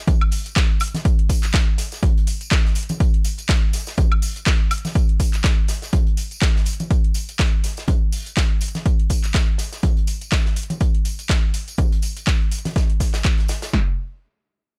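A punchy, overdriven analog drum machine drives this soulful, bittersweet house groove at 123 BPM with a 16th-note swing, its kick and snare up front, layered with an overdriven garage kit of handclaps, metallic hi-hats and woodblock, while congas with tambourine and a small-room acoustic kit with a medium-tuned snare sit in the background of a dry, gritty hardware recording with studio reverb, all cut from a longer piece.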